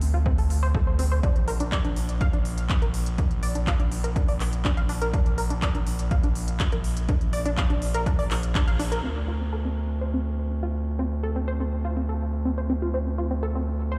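Dark and hypnotic, this melodic techno excerpt in D minor moves at 123 BPM in a straight 4/4, cut from a longer piece. A gritty, aggressive synth bass sits up front from the start, its square, sawtooth and sine tones, oscillator sync and resonant filter sweep giving it an evolving, distorted edge, with sidechain pumping tying it to the beat. A tight, driving sequenced synth plays arpeggios from C4 to F5, its detuned sawtooth and triangle tones plucked by a filter and coloured with chorus, phaser, digital delay and sidechain pumping. A punchy, layered electronic kick and a drum kit of handclaps and smooth, low-passed hi-hats carry the groove in small room ambience, with a band accent at 8.6 seconds before the kick drops out at 8.7 seconds and the kit at 9.0 seconds. From there bass and arpeggios continue alone to the end, the harmony moving between D7(no3) and Bb, all set in light digital reverb that sounds like a big system playing in a bare room.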